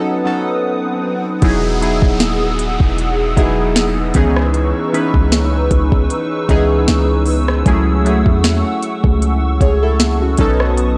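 Contemporary R&B with a romantic, dreamy mood, this excerpt opens with round, detuned analog keys treated with chorus and phaser over a hollow, flute-like pad that warbles under ensemble chorus and sidechain pumping, while a background swell and downlifter come in at 0.7 seconds. At 1.4 seconds a deep, boomy 808-style bass and an electronic drum kit enter, the kit's soft kick, sharp snare, smooth hats and rim clicks carrying vintage 12-bit sampler grit and a lightly swung feel. The chords move from Emaj9 through C#m9 and F#m7/C# to B9 in a dry, gritty recording that keeps the keys and bass up front.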